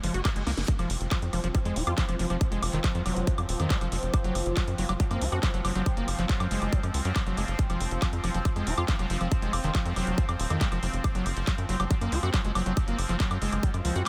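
Psychedelic trance at 139 BPM in F phrygian, hypnotic and alien, where a squelchy, gritty acid bass riff pumps against a nasal, tightly plucked sequencer bass and a punchy up-front kick, while a techno kit with cracking snare, handclaps, hi-hat and woodblock drives alongside a bubbling, bright stepped-filter pad that enters at 1.0 s over Gb and F chords, all drenched in a dreamy, huge ambient reverb as a very quiet reverse cymbal and a drum fill open this excerpt.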